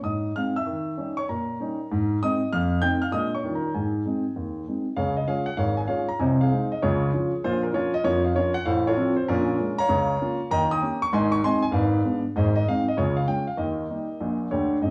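A lone baby grand piano, polished and up front with long sustain, opens this exuberant, playful stride-jazz excerpt with a swung 4/4 feel, moves into a new section at 5.0 s, and ranges from deep bass to high treble, all set a little back in a club room with a wet, short reverb.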